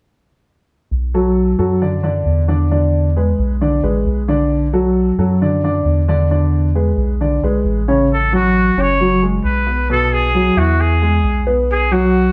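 A round, deep analog bass opens this relaxed, danceable Cuban son and guajira fragment at 0.9 s, its dark tone shaped by a filter sweep, and a worn baby grand piano joins with long-sustaining arpeggios over a Bm7 to E7 vamp at 134 BPM in 4/4. At 8.1 s the harmony shifts toward A6 and F#sus2 as a trumpet with a straight mute takes the melody, nasal and breathy, with light vibrato and scooped notes in a jazz style. A moderate large-studio reverb places the ensemble further back in the room.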